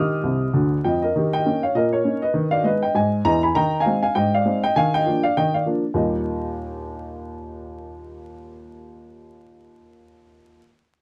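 A woody, up-front upright piano plays alone from the very start, launching into exuberant, playful stride jazz at 199 BPM with a 60% swing on the eighths in Eb major, and a quick fill runs from 0.2 to 1.1 seconds. The harmony moves from Eb through Eb7, Abm/Eb, Ab/Eb and Bb/Eb before settling back on Eb at 6.0 seconds, spanning C2 to Eb6 across the 10.6-second clip cut from a longer piece. The close, dry 1970s-style studio sound carries a modest booth ambience and a layer of vinyl crackle.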